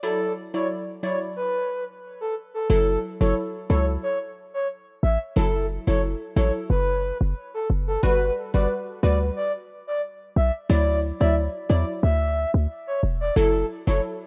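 Sultry and bouncy, this dancehall excerpt moves at 90 BPM in a straight 4/4 in F# phrygian, with chords shifting from Dadd9 through F#m7 and Gmaj7. A breathy, flute-like synth lead carries the melody with vibrato, chorus and tape echo, while a glassy wavetable pluck with a crystalline, ring-modulated edge and a moving filter sweep supplies accompaniment from the start. After an opening break, a punchy, tight 808-style bass arrives at 2.7 s and sits up front, all in the dry, rough sound of a home demo mix.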